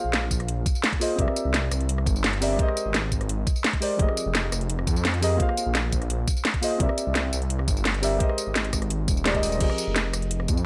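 Liquid drum and bass at 171 BPM in F dorian, this melancholic, rolling cut from a longer piece cycles through Bb9sus4, C9, Abmaj9#11 and Fm11 while a deep, nasal chord stab plucks soft, decaying voicings through chorus and tape echo. Underneath, a menacing, detuned saw bass sits up front with a saturated filter swell and sustained, evolving tone. A tape-tinged, layered garage kit with a cracking snare, metallic hats, rim click, tambourine and crash joins at 0.1 seconds, and a knocking electronic kick enters at 0.3 seconds, all in a lightly reverberant room with a faint mains hum.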